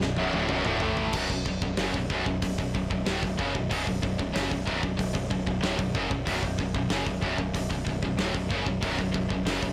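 A drum fill on a big, punchy acoustic kit opens this relentless heavy metal excerpt at 94 BPM in B minor, with three guitar parts already playing riffs and a growling overdriven bass underneath, over a Bm chord. At 1.1 seconds the double-tracked overdriven guitar stops, leaving a tight, up-front distorted guitar on the riff over a high-gain guitar set further back, while the bass holds the low end and the drums hit crash, hi-hat, toms, a medium-tuned snare and a soft-clipped kick. The recording is blown-out and overdriven, with light reverb.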